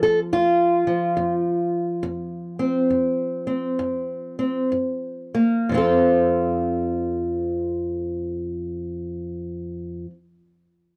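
A lone fingerpicked ladder-braced acoustic guitar, dark and boxy with the woody tone of old strings, sits up front in a dry, close 1970s-style studio sound for this soulful, gritty, swung country blues fragment, slowing over the opening and holding a stop on F5 from 2.0 to 4.7 seconds before a Gb chord and a return to F at 5.7 seconds.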